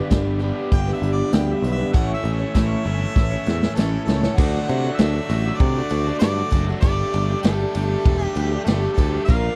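Hopeful and warm, this folk rock and heartland rock excerpt moves at 98 BPM in a straight 4/4 in D major. A shimmering, octave-doubled twelve-string acoustic guitar carries the picked accompaniment, with a touch of finger squeak, while a bright, overdriven stack guitar, double-tracked, plays a riff beneath it. A growly electric bass sits up front with a punchy vintage drum kit whose snare is medium-tuned and whose top is rolled off, and a jingly tambourine adds a very quiet sparkle. A roomy harmonica with light vibrato takes a solo from 0.7 seconds, set back in the mix, over a very soft, flute-like tonewheel organ turning slowly through a rotary speaker. A drum fill at 3.2 seconds leads the chords from G and A into D at 4.4 seconds and then Gsus2 at 6.8 seconds, all captured in a dry, close 1970s-style studio sound.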